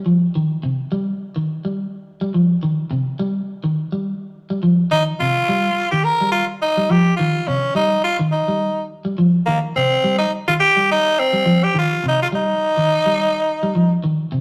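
A slightly broken-up electric guitar opens this joyful, driving afrobeat excerpt with picked, scooped arpeggios steeped in spring reverb, and at 4.9 seconds a raspy, punchy tenor saxophone steps up front with a bright, vibrato-laden, pop-style solo melody that runs until 14.0 seconds, the lightly swung sixteenth-note feel ringing through a wet stone room with a rough rehearsal-room sound.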